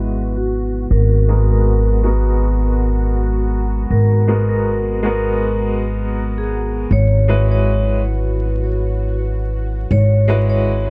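Trip hop at 80 BPM in G# minor, melancholic and dark, with a thumpy pizzicato upright bass up front on G#1, a clear upright piano with tremolo and tape echo, a deep detuned analog pad with chorus holding sustained chords, a nasal, string-like drone in the background, and a metallic, ringing vibraphone melody with tape echo entering at 0.4 s, all moving between Eadd9/G# and G#m9 under vinyl crackle, a low-pass filter sweep and a dry sound in this cut from a longer piece.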